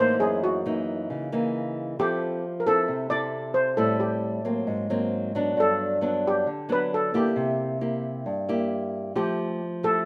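A steel pan and a nylon-string guitar begin together in this wistful, intimate bossa nova fragment, moving at 134 BPM in a straight 4/4. The pan carries the melody between F#4 and D5 with a shimmering, metallic tone that is still mellow and dark, its smooth notes struck with soft rubber sticks and placed up front. Beneath it, the fingerpicked guitar supplies the accompaniment with a small, acoustic sound, also close to the listener and ranging from F#2 to A4. The harmony drifts through a series of chords, from F#6 to Fmaj7, Am7, G#9 and Gmaj7, then C7 before settling on Fmaj9 at 9.2 seconds. A light reverb gives the pair a gentle sense of space across the roughly ten-second passage, which is cut from a longer piece.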